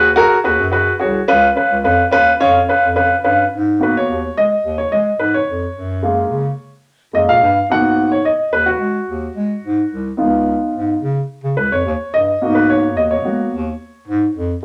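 A polished, present grand piano sits up front in this driving, passionate slice of uptempo 1960s-style soul at 108 BPM in G# dorian, comping over G#m7 and C#7 before stepping into a solo from 3.5 s that moves through F#maj7 and back to G#m7. Beneath it, a mellow bass clarinet carries the bass line with jazz-style vibrato, also placed up front. The whole passage sits in a wet studio reverb and is cut from a longer piece.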